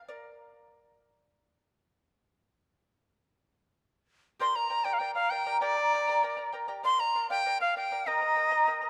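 Melancholic yet festive, this short Andean folk excerpt moves at 98 BPM in a straight 2/4, set in G minor. The charango opens alone, fingerpicked on its shimmering double strings with some octave-doubled courses, sounding briefly from 0.1 to 1.6 seconds before returning at 4.4 seconds. At that point the cane quena enters up front with the melody, its end-blown tone airy and reedy, shaped by tongued notes and vibrato. Beneath it, the charango carries the accompaniment as the harmony moves from Gm to Bb and then to Eb. A moderate concert-hall reverb gives the pair a spacious, resonant setting, and the passage is cut from a longer piece.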